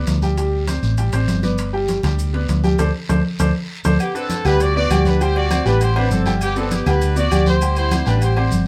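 Salsa at 199 BPM in G major with a sunny, joyful mood, anchored up front by a clear, woody upright piano and a dark, round hollow-body electric bass, with low-tuned congas, raspy guiro, grainy maracas and ringing timbales and agogo bells in the background, a band accent from 2.8 seconds and a drum fill from 3.2 seconds, and a tight horn section with light vibrato entering at 4.0 seconds over Gmaj7 and D7sus4 chords in moderate studio reverb.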